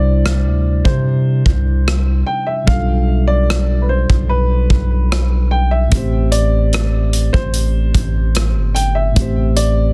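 This moody, longing piece of contemporary R&B in A minor opens on a dark, natural baby grand piano carrying the melody through a digital delay, over a mellow tine electric piano playing clean, direct accompaniment. A deep, sine-toned 808-style bass sits up front from the start, each note landing with a fast attack and a long decaying tail. At 0.3 seconds a modern acoustic studio drum kit enters with a tight kick, hi-hat and rim click, plus a softly clipped snare. The passage moves at an unhurried 74 BPM in a straight 4/4, beginning as a break that lasts until 5.9 seconds and passing through C and G7/B before settling on Am7. The studio ambience is dense and the master is heavily limited and modern, giving this short cut from a longer piece a close, full sound.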